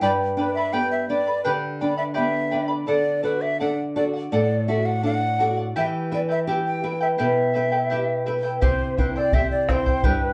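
A bright, airy wooden quena carries the wistful, melancholic melody with vibrato and tongued notes, its lifted highs set in plate reverb. Beneath it, in this Andean folk piece at 84 BPM in 2/4, an up-front fingerpicked charango shimmers on its doubled strings while a fresh-stringed classical nylon guitar, also fingerpicked and up front, adds audible finger squeak over a G, D, Em, C progression. A deep, dark bombo enters at 8.6 seconds, and the whole ensemble sounds from further back in a small, reverberant room, in what is a short cut from a longer piece.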